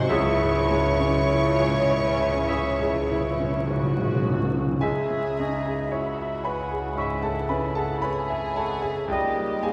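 A church-like hall bloom and faint vinyl crackle frame this brief passage, cut from a longer classical piece in C# minor that moves at a slow, rubato 50-57 BPM in 4/4, passionate and brooding in mood. An intimate concert grand piano sits up front, its action noise audible and its bass deep, sharing the melody with a dark, woody violin section bowing sul tasto with vibrato from a distance. Beneath them, a second violin section, an airy silver flute, a clear oboe and a vintage-toned clarinet trace second lines in the background, while hushed violas and a roomy bassoon fill in the accompaniment. French horns hold very quiet sustained chords, joined at first by a barely audible trombone section, and floating cellos with rich double basses carry the bass alongside a very quiet tuba that drops out around 4.6 seconds. Soft-mallet timpani with calf heads play a round fill until 4.8 seconds, as the harmony rests on C#m before shifting to D#7/C# near 9.1 seconds.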